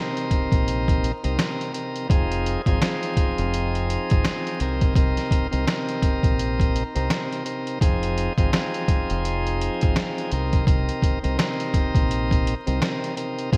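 A bright, 1980s-style digital production dusted with vinyl crackle and a lush hall reverb frames this dark, reflective boom-bap hip-hop excerpt at 84 BPM with a swung 16th feel, where a shouting, lightly overdriven tonewheel organ sits up front through a stopped rotary speaker and cassette-tape colouring over Cm7 and Fm7 chords, joined at 0.2 seconds by a compressed, muffled, pitched-down sampler-style drum kit with a thumpy kick and medium-tuned snare and hi-hat, and at 0.5 seconds by a round, punchy, deep dub fingered electric bass.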